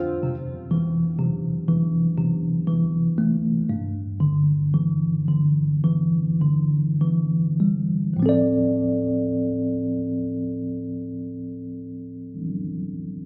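A worn, slightly out-of-tune tine electric piano sits up front on its own, carrying this melancholic, heartbroken pop fragment in D minor at a slow 48-63 BPM in 4/4, spanning D2 to D5. Its chords move from Fmaj7 to Em7/G while the tempo slows through the first 8.2 seconds, then settle on Dm7 for the closing passage. Cut from a longer piece and captured on a phone in a small room, the sound carries a light club reverb.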